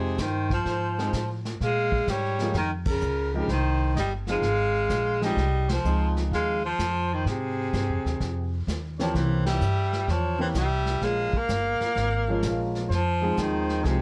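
A swung 4/4 at 127 BPM carries this moody, cool small-group jazz excerpt in F minor, where a breathy, whispered baritone saxophone with vibrato sings the melody over a clear trumpet second line, an intimate concert grand piano with audible action noise accompanying, woody pizzicato upright bass up front, and a vintage brush kit with dark cymbals entering at 0.2 seconds, with band accents at 2.8, 5.6 and 9.4 seconds, all wrapped in light reverb and the warbling pitch drift of worn cassette tape.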